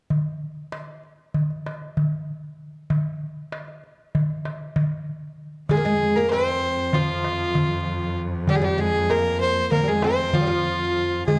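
Dark, reverberant production frames this hypnotic, soulful Turkish makam fragment in 9/8, where a crisp, metal-shelled darbuka plays alone up front from 0.1 s until, at 5.7 s, a biting, earthy bowed fiddle takes the melody, a mellow, woody fretless oud adds a deep second line, and a focused cello holds a vibrato drone on F2.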